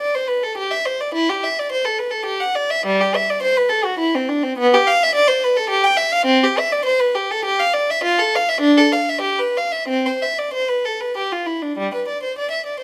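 Classical music in a baroque style, this short excerpt from a suite movement for unaccompanied violin has a flowing, serene mood. A single bowed violin carries everything from 0.0 to 12.8 seconds, moving in triple metre with a free, rubato pulse. Its period-style gut-string tone is full-bodied and slightly reedy, ranging from G3 up to G5, with tuning set to A4 = 438 Hz. The player sits up front, captured by close, detailed microphones, while light reverb adds a gentle sense of space.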